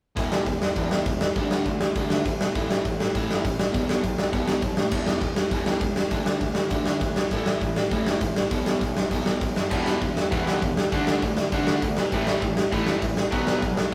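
Punk rock at 201 BPM in a straight 4/4, rowdy and upbeat, cut from a longer piece and captured as a rough rehearsal-room recording with light reverb. A big, up-front acoustic drum kit with a punchy kick, medium-tuned snare, hi-hat and crash drives a riff from an overdriven semi-hollow guitar and a growling, round picked bass, both sitting in the background as power chords cycle E5, D5, A5 and B5. At 9.7 seconds a tight, bright distorted guitar joins with its own picked riff, thickening the sound through to the end.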